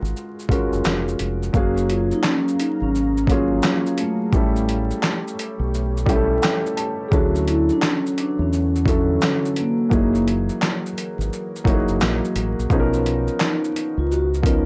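A relaxed 86 BPM groove in 4/4 with a 64% swing on the sixteenths carries this nostalgic, cosy lo-fi hip hop excerpt, driven by a gritty sampler-style drum kit with a thumpy kick, fat snare, handclaps, hi-hat and shaker, overdriven and compressed and sitting up front. A felt-muted upright piano plays soft, intimate accompaniment from the start, its action noise audible beneath a low-pass filter, while a deep dub fingered electric bass adds round, punchy low end. At 1.6 seconds a vibraphone with soft mallets enters with a mellow, ringing melody, filtered and touched with tape echo, and at 2.4 seconds a moody ambient pad with detuned sawtooth layers, chorus and its own reverb settles into the background. The chords move from F#maj9 through A7, Dmaj9 and F#13 to Bmaj9#11. The overall sound is dry and gritty, a hardware recording with vinyl crackle.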